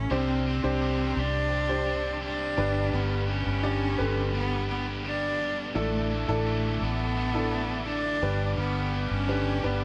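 A rich, nasal cello carries a hopeful, anthemic pop melody at 85 BPM over a bright, woody upright piano and a round, punchy muted electric bass, with a crunchy overdriven guitar riff entering at 0.1 seconds, a veiled con sordino string section sustaining very quiet chords high above, and plate reverb on the cello and piano as the harmony moves from Csus2 through G and Dsus2/A back to G in this short excerpt from a longer piece.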